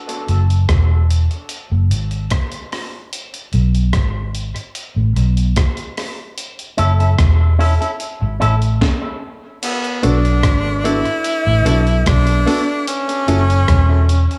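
Dub reggae at 74 BPM in B dorian, heavy and hypnotic, built on a gritty, compressed breakbeat kit with a thumpy kick and high-tuned snare under a dark, foam-muted fingered bass sitting up front. A twangy, envelope-filtered electric guitar appears briefly with dub echo around 6.8 seconds before a stop, and at 9.6 seconds a bright, close-miked tenor saxophone takes the solo melody with vibrato and dub echo. Short, polished grand piano stabs, also echoed, join at 10.0 seconds, all set in a small room with light digital ambience.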